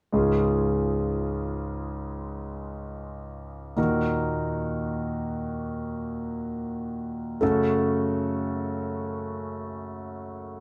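A concert grand piano carries this short pop fragment, playing an accompaniment part in free time that reaches from deep bass notes up into the middle of the keyboard. Its tone is intimate and polished, sitting up front with long sustain, and the audible action noise of the instrument adds a close, human quality. The mood is emotional and tender, set in D-flat major and tuned slightly below standard pitch. The harmony moves from D-flat to E-flat minor at 3.8 seconds and then shifts to a darker G-flat minor at 7.4 seconds, lending the passage a wistful turn. A wet studio reverb gives the piano a gentle room glow, and the whole clip, cut from a longer piece, runs just over ten seconds.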